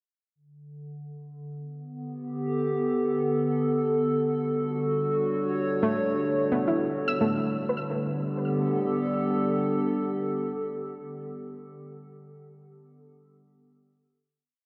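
Ambient piece in free time and G lydian, serene and peaceful, opening at 0.8 seconds with a warbling, nostalgic tape-like pad that holds slowly shifting chords from Gadd9 to Dmaj7 under a wet cathedral reverb. A nasal, evolving analog drone with pulse-width modulation enters at 4.7 seconds, and at 5.8 seconds a soft, round pluck adds arpeggios through tape echo, its three slow loops of unequal length drifting against each other. The piece settles onto a final Gadd9 chord, with the lo-fi, vintage pad held up front.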